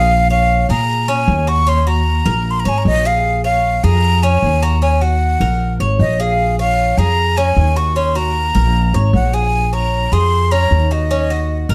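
From the first moment a breathy, up-front flute with a slapback echo carries the melody over bright, metallic picked arpeggios on the double-strung Cuban tres and a woody, growly pizzicato upright bass, in a nostalgic, warm Cuban son and guajira excerpt at 153 BPM in Bb minor that alternates between Bbm7 and Ebm7 throughout its 11.7 seconds, with light reverb and a dark production.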